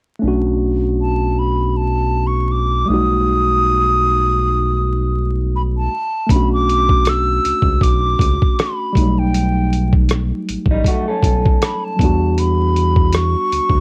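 Worn, warbling cassette tape with vinyl crackle and light reverb wraps this smooth, soulful neo-soul R&B excerpt at 79 BPM in B minor, where a slightly out-of-tune tine electric piano and a deep analog bass with tube saturation move through Bm7 and B7b13, a breathy, close-miked silver concert flute carries the melody from 1.0 seconds, a gritty, pitched-down boom bap sampler-style kit with a thumpy kick joins at 6.3 seconds, and a slightly broken-up electric guitar through a small old amp with spring reverb adds a brief second line at 10.7 seconds before the harmony lands on Em9.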